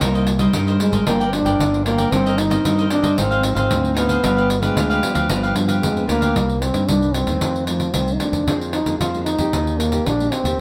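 Nostalgic and bittersweet, this samba and choro excerpt sets a mellow, breathy trombone melody with plate reverb over a full-bodied, thumb-plucked nylon-string guitar, a crisp picked cavaquinho that drops out at 6.3 s, a growling, punchy overdriven fingered electric bass and a jingly pandeiro, all heard from further back in a moderately reverberant studio as the chords move from Abmaj7 to Eb.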